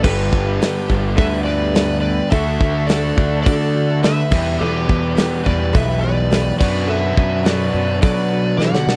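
A straight 4/4 groove at 105 BPM drives this gritty, swaggering classic rock fragment, where an up-front big-room drum kit with a tight kick and a punchy, bright fuzz bass anchor a G, D, Em, Bm/F# progression beneath a warm overdriven slide guitar melody, a bluesy distorted lead guitar tracing a second line in the background, double-tracked crunchy and dark, sludgy overdriven guitar riffs, a very quiet shimmering twelve-string acoustic, and a vintage metallic cowbell, all captured in a dry, close 1970s-style studio sound before a drum fill at 8.6 seconds.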